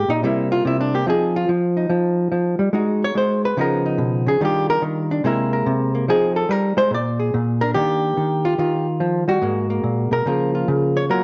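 Swinging and relaxed, this short cut from a longer solo jazz piece in Eb major at 144 BPM features a dark, clean, fingered hollow-body electric guitar, compressed and up front in a large studio's moderate reverb, moving through chords such as Ebmaj9, Caug7, Fm7 and Bb7 before a new section begins at 7.7 seconds on Ebmaj9 and moves on to Abm9 and Db6.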